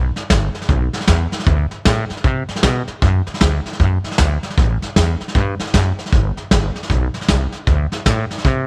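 The sound is dry and close, with both players up front and the drums sitting in a small, pumping room. This rowdy, upbeat rockabilly fragment, cut from a longer piece, swings at 155 BPM in 4/4 and sits in D mixolydian. The upright bass opens at 0.0 seconds, plucked on steel strings with a woody, thumpy tone that ranges from G1 to C3. A vintage drum kit played with brushes joins at 0.2 seconds, pairing a punchy kick and a medium-tuned snare with hi-hat under a rolled-off top that lends it a warm edge. Both parts drive on together through the single section until the fragment ends at 8.6 seconds.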